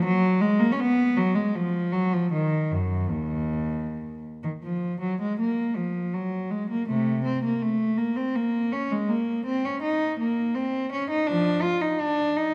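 A single bowed cello with a gut-string, reedy tone and light vibrato sits up front, playing alone in period style through this solemn, flowing baroque-style suite movement in Eb minor. The phrasing is rubato around 81 BPM in 3/4, ranging from Eb2 up to F4, with its opening phrase returning at 4.6 seconds. A moderate concert-hall reverb and dark, warm production surround this short cut from a longer piece.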